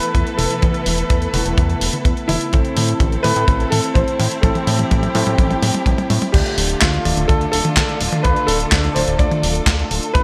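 Bright 1980s-style digital production with a moderate plate reverb frames this short, melodramatic and nostalgic slice of Italo disco, cut from a longer piece and moving in a straight 4/4. A smooth, vintage grand piano carries the melody through a delay, while a muted symphonic string section bowed con sordino holds dark, veiled, lush chords with vibrato and a soft attack. An overdriven tine electric piano, gritty through a combo amp and a low-pass filter, adds bright stabs, and a glossy, chorused synth bass enters at 0.1 seconds with a retro tone blending pulse and sawtooth waves, pulse-width modulation, ring modulation and a fast filter pluck. The drums pair a dry, tight acoustic kick with its rolled-off top against a compressed, sampler-style kit whose crash, handclaps, hi-hat, medium-tuned snare and toms sound overdriven and dusty, sitting up front, with a drum fill running from the start until 6.3 seconds. 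Harmony moves from Esus4 to Am, then shifts to Dm as a new section arrives at 6.3 seconds.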